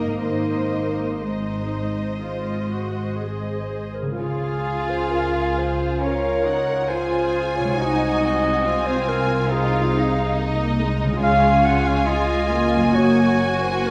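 Muted violins, violas, cellos and double basses open this serene, slow romantic movement together, their con sordino tone veiled and dark, while a concert harp rings out thumb-plucked arpeggios in the background. The violins carry the melody and a second line over soft-attack viola accompaniment and bowed cello and bass, moving in a rubato 4/4 at 58-72 BPM in Db major through chords such as Ab7/C and Gb6. At 3.7 seconds a distant, roomy solo clarinet joins with a warm second line, and a wet scoring-stage reverb surrounds the ensemble.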